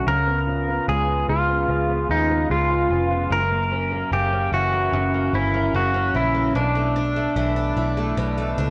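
A bright, clean pedal steel guitar carries the melody with fingerpicks, slide, volume swells and tape echo over a shimmering, octave-doubled twelve-string acoustic guitar picking arpeggios through lush chorus, a filter sweep and tape echo, while a dark, round, foam-muted electric bass with tube saturation enters at 0.1 s beneath C#7, F#7 and Bm11 chords in this ethereal, blissful dream pop excerpt at 74 BPM, set in a moderate recital hall reverb with a dry, gritty hardware sound.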